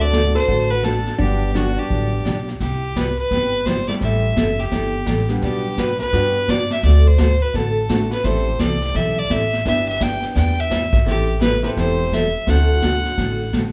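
Western swing country at a brisk 170 BPM in G major, with a swung 4/4 feel and a down-home, playful mood, cut from a longer piece. A close, biting fiddle carries the melody up front, its nasal, earthy tone touched with light vibrato and an airy bow. A dark, compressed hollow-body jazz guitar adds a clean second line only for the opening 2.5 seconds, while a smooth, vintage upright piano sits in the background with long sustain. Pizzicato upright bass anchors the low end with a woody, dark sound, and a full-bodied dreadnought acoustic guitar is picked underneath. A distant, roomy brush kit with a boomy kick, hi-hat and medium-tuned snare keeps time, and the whole band plays together in one room with a wet studio reverb, moving through jazzy chords such as Gmaj7, Cmaj7 and Am7 before settling on D9 at 12.5 seconds.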